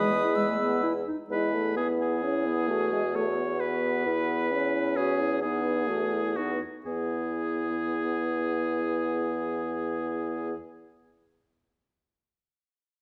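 A moderate recital-hall reverb surrounds this spirited, cheerful excerpt of a quick classical-period movement for wind quintet in E major and 3/4, taken at 118-133 BPM with a rubato feel, where an airy, crisp-edged silver flute sings the melody only until 1.1 s, an up-front oboe with light vibrato carries the second line, a dark, soft-attacked clarinet and a distant, roomy French horn fill the accompaniment, and a mellow, vintage-toned bassoon holds the bass on E2, with the tempo slowing from 3.4 to 6.9 s before settling back on the E chord.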